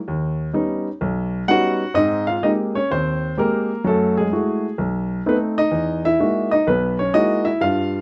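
Solo jazz at 127 BPM in a swinging 4/4, this short excerpt features a baby grand piano played up front with a natural, short-sustained tone across a range from B1 to F#5, moving from an opening Eb7alt through Abmaj9, Gbm9 and B7b9 to settle on Emaj9#11, all set in a moderate club reverb that gives it a warm, swinging feel.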